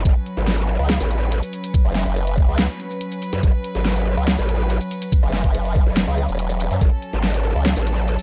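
Chaotic and heavy, this short cut of half-time wobble dubstep sets a growling, saturated bass and a detuned formant-sweep wobble bass, both up front with chorus and overdrive, against a knocking overdriven kick, a dubstep kit with a huge snare, hi-hat and shaker, and a distant, floating chamber string section holding soft sustained chords that pump beneath it all, in a dark, dry production.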